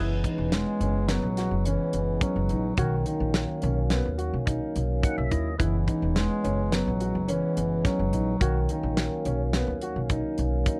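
A straight 5/4 pulse at 106 BPM drives this bright, intricate progressive instrumental excerpt in F# mixolydian, where a mellow, smooth-topped bass clarinet carries the melody over a fat, lightly overdriven tonewheel organ with third-harmonic percussion, vibrato and a slow rotary speaker (which adds a fill at 4.8 seconds), dark, boxy grand piano arpeggios with long sustain, a woody pizzicato upright bass, and an acoustic studio drum kit sitting up front with a punchy kick and hi-hat, all moving between F#7sus4 and Bmaj7 in a dry, close 1970s-style studio sound.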